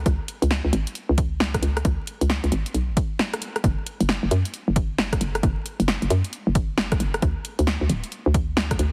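A skippy, moody two-step garage groove at 134 BPM with a 63% swing on the sixteenths drives this short cut from a longer UK garage piece, built on a hollow, knocking FM bass with a bouncy, fast-attack decay sitting up front between D1 and F#2, an overdriven electronic kick, and a punchy analog drum machine supplying overdriven hi-hat, rim click and snare, all under light digital reverb, heavy multiband compression for a radio-like sound, and a layer of vinyl crackle.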